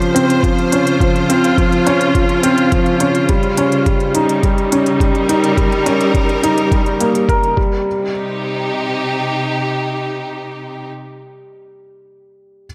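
A straight 4/4 pulse at 105 BPM drives this luminous, tender piano-and-strings electronica, with crisp electronic hats from the start and a thumpy, muffled, pitched-down kick joining at 0.4 s before both drums fall away by about 7.7 s. Up front, a woody upright piano with audible action noise repeats a delayed riff over Dbmaj7 and Eb7, continuing to 12.7 s. A lush, biting symphonic string section bowed with vibrato sustains chords into a turn to C minor, all set in a moderate concert-hall reverb.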